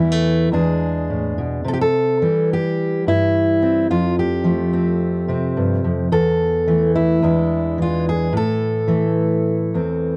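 The recording is dry and close, with a 1970s studio character and a light touch of reverb. It is a wistful, reflective folk piece for a single fingerpicked steel-string acoustic guitar, a warm-toned dreadnought placed up front. The tempo sits at 108 BPM in a straight 4/4, and the guitar ranges from E2 up to A4 across the 10.2 seconds heard here. The harmony moves from Esus4 and E7 through C and F, returns to Esus4 and E7 at 6.1 seconds, and settles on A minor at 8.3 seconds, giving the passage its reflective pull. It is cut from a longer piece.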